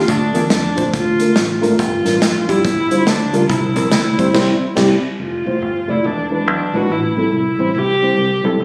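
A phone recording made in the room, with studio reverb and compression, captures this short, jubilant uptempo gospel excerpt at 141 BPM in 4/4 with a swung feel, moving through chords from Bbmaj7 and Gm7 to C7, then Fmaj7, E7 and Am7. A dark, intimate viola carries the melody up front with light vibrato, a soft attack and an airy bow, over a mellow tine electric piano heard through its built-in speakers and a punchy, foam-muted fingered electric bass. A natural country drum kit with a punchy kick and medium-tuned snare drives the first part, joining the band accent at 4.3 seconds before it stops at 4.9 seconds.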